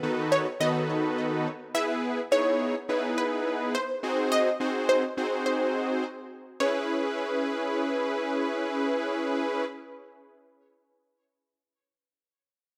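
A rough home-demo mix with a moderate, lush hall reverb frames this driving, bittersweet pop passage in C# minor at 105 BPM, cut from a longer piece. A fat, detuned sawtooth polysynth with chorus sits up front, holding sustained chords through B7/D#, Emaj7 and G#7 before settling on C#m7 at 6.6 seconds. Above it, a punchy unison pluck with a noise layer and delay carries the melody, its bright, decaying notes running until 10.3 seconds.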